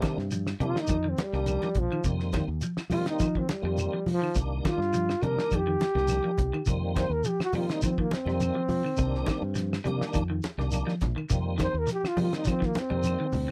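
Driving and defiant, this afrobeat excerpt at 104 BPM in C minor features a breathy, whispered trombone solo up front over a fingered electric bass, a thuddy cloth-damped drum kit with a fat snare and gritty, rolled-off top, a clean semi-hollow guitar picking arpeggios with subtle chorus, a full tonewheel organ through a slow rotary speaker, a grainy shekere, and congas and woody claves in the background, all cycling between Cm7 and F7sus4 in a dry, close 1970s-style studio sound.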